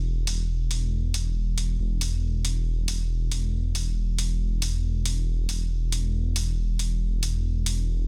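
Driving peak-time techno at 138 BPM in 4/4, intense and hypnotic, built on a dark, rumbling detuned saw bass sitting deep around E1 with a beating unison tone and fast attack, joined at 0.3 seconds by an up-front, overdriven analog hi-hat re-recorded in a large room, all held close and dry in a dense, heavily limited modern master across this brief 8.1-second cut.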